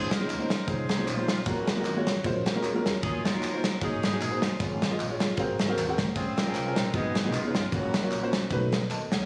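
Reverent and uplifting, this brief uptempo gospel excerpt in Db major swings at 153 BPM, with a tight vintage horn section carrying the melody over a woody, slightly detuned upright piano, a thumpy pizzicato upright bass, a punchy up-front studio drum kit on kick, snare and ride, and background tambourine and handclaps, while a dark, clean electric guitar with spring reverb adds a second line from 2.2 to 6.1 seconds before the piano closes with a fill at 8.7 seconds, all heard through an echo-chamber room and a phone recording.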